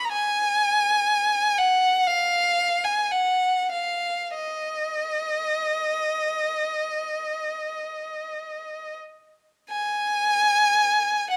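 A solo violin carries this brief classical fragment alone, its rich, smooth, even bowed tone sitting up front, shaped with vibrato by a single player. The mood is lonely and yearning, and the playing moves with an expressive rubato that lets each phrase breathe freely over a slow, unhurried pulse. The line stays in a high, narrow register, lending the melody a plaintive, singing quality. Close, detailed microphones capture the instrument intimately, with a light reverb adding a touch of space around it. Cut from a longer piece, the passage lasts about 11.4 seconds, with its opening idea returning at 9.7 seconds before it breaks off.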